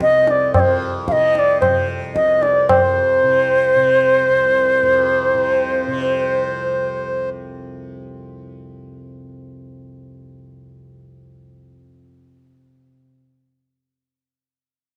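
Solemn and longing, this Hindustani classical passage in 7/4, taken from a longer piece, sets a pure, bright bamboo bansuri melody up front with vibrato over a buzzing, shimmering tanpura drone and a reedy, breathing harmonium second line in the background, while a low-tuned, short-ringing tabla plays only until 2.9 seconds and the tanpura sounds alone from 7.3 to 13.0 seconds, all in a dry, close 1970s-style studio sound.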